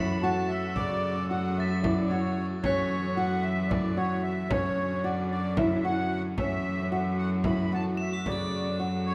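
A shimmering, restless piece of contemporary chamber music in 7/8 at 224 BPM (eighths) opens with a sweet, airy accordion melody over a bowed, gut-string cello holding F#2, thumb-plucked flamenco guitar arpeggios, and clear, smooth symphonic strings sustaining chords in the background, while bell-like crotales ring high above until 3.2 s. A deep, dry frame drum played with hard hands joins at 0.8 s as the harmony moves between F#m7 and Dmaj7/F#. The crotales return briefly at 8.0 s, and a recital hall reverb lends the whole ensemble a wet, spacious glow.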